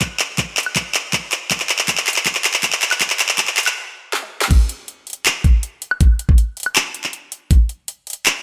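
This future bass excerpt opens with an electronic kick drum and a trap drum kit together, building up at 160 BPM in 4/4 with a half-time feel and a bright, playful mood. The knocking kick sits up front, while the kit brings a sharp snare, metallic hi-hats, handclaps, toms, woodblock and crash cymbal, all filtered to keep their low end trimmed. A drum fill runs through the build-up until a stop at 3.8 seconds, then a brief second fill leads into the drop at 4.5 seconds. From there the kick continues until 7.6 seconds, and the kit plays on to the end. A light digital ambience gives the purely percussive arrangement a produced sheen.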